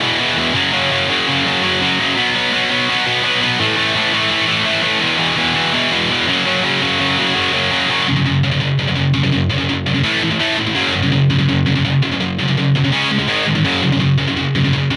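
A bright, scooped high-gain electric guitar carries this entire 15-second metal excerpt on its own, picked and double-tracked, and placed up front in the mix. The mood is epic and aggressive, driven by a straight feel in 4/4 and a heavy dose of distortion. Its part spans E2 to C#4 and moves through the chords E5, F#5, B5 and A5 before a new section begins at 7.9 seconds. That second stretch returns to A5 and F#5, then closes on a quicker run through C#5, G#5 and F#5. A light reverb with a digital ambience surrounds the guitar, and the instrument is tuned slightly under standard pitch, with A4 at 438 Hz.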